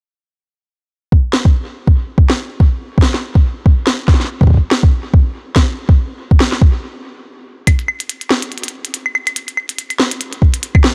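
A soft electronic kick drum opens this melancholic, eerie IDM excerpt at 1.1 seconds, sitting up front in a digital ambience. Moments later a glitchy electronic drum kit joins with a tiny snare, clicky hi-hats and claves, its tape echo adding a haunted shimmer to the swung 16ths at 142 BPM in 4/4. The two percussion parts carry the entire piece, giving it a sparse, brittle, unsettled character. A stop arrives at 6.8 seconds, and after it the kick steps away while the glitchy kit continues into a new section. The kick returns briefly near 10.4 seconds before the excerpt cuts off.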